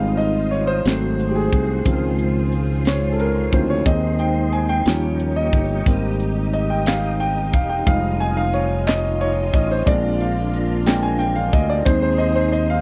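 A vintage-toned grand piano takes the lead throughout this jubilant, soulful slow gospel passage in Ab major at 60 BPM in 6/8, over a punchy, bright fingered electric bass and a tight funk drum kit with a high-tuned snare. A smooth tonewheel organ with slow rotary speaker and chorus vibrato holds sustained chords, while a dark, bowed string section sustains chords in the background. Crisp group handclaps join from 6.9 to 11.2 seconds, and the dry, close 1970s-style studio sound keeps the piano, bass and drums up front.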